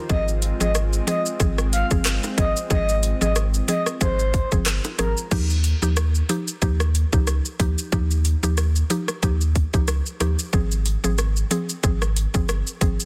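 A deep, round sine sub bass sits up front in this summery, bouncy dancehall excerpt at 92 BPM in Ab major, driven by an overdriven electronic kit of tight kick, metallic hats, handclaps, rim clicks, shaker and crash, with very quiet, high-tuned bongos. A woody, chorused FM mallet pluck carries the accompaniment throughout, while a breathy, flute-like lead with vibrato and digital delay floats over a smooth, warbling vintage pad that pumps against the beat. The pad stops at 5.3 s, as the harmony moves from Ab6 to Ebadd9, with the lead and bongos already gone, leaving a dry, dense, heavily limited groove of bass, drums and pluck.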